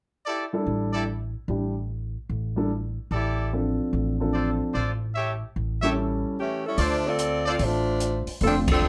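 Big band swing in D minor at 147 BPM, swinging and dramatic, this short cut from a longer piece opens with clear, vibrato-tinged trumpet section stabs over a dark, mellow baby grand piano and a woody, thumpy pizzicato upright bass on gut strings, moving from A7sus4 through Dm7/A and A7. The warm saxophone section takes the melody at 6.4 seconds, and at 6.8 seconds the open jazz drum kit comes in with dark cymbals, hi-hat and a boomy kick as the harmony settles on Dm7. The whole band hits an accent at 8.6 seconds inside a moderate club reverb.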